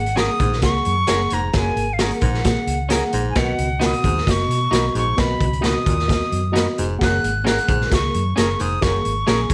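Uptempo 1960s-style soul at 132 BPM in F# major, warm and joyful, this 9.5-second excerpt from a longer piece sets a breathy, bright flute melody over mellow tine electric piano, round foam-muted electric bass, a raw garage drum kit with a boomy kick and gritty saturation up front, twangy slightly broken-up guitar stabs, and a smooth baritone saxophone riff with light vibrato entering at 0.4 seconds, all over F#add9 and B chords in light reverb with vinyl crackle.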